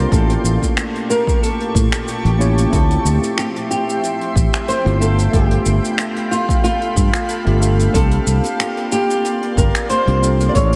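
A fingerpicked flamenco guitar with audible finger squeak carries the wistful melody through lush chorus and analog delay, over a worn, slightly out-of-tune tine electric piano, an ethereal, shimmering ambient pad and a growly, up-front fingered electric bass, while a punchy electronic kick and a natural-sounding brush kit with finger snaps, hi-hat and shaker add a lightly swung pulse to this relaxed sunset chillout excerpt, moving from A7b9 through Dm11 and G9 to C9sus4 in a dreamy, reverb-soaked hall.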